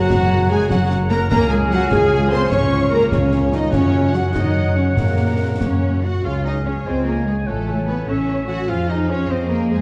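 Cinematic heroic adventure score in a straight 6/8 at 99 BPM, this Db major passage feels bold and adventurous, moving from Gb through Db and on to A and F minor by its close. A rich, focused violin section carries the melody with vibrato, shadowed by a very quiet, dark second violin line with portamento. A distant, clear oboe adds a second line, while a dark clarinet and an airy, crisp-attacked silver flute add distant second lines from the background. Warm French horns hold sustained chords over a very quiet viola accompaniment, and a ringing, thumb-plucked harp spins arpeggios in the background. The low end is firm, with an up-front double bass section and soft-attacked cellos giving the bass a lush, expressive weight. Snare, bass drum and bright clash cymbals sound in the background from 0.1 to 5.8 seconds before dropping away, and a moderate concert hall reverb wraps the whole in a dark, warm production.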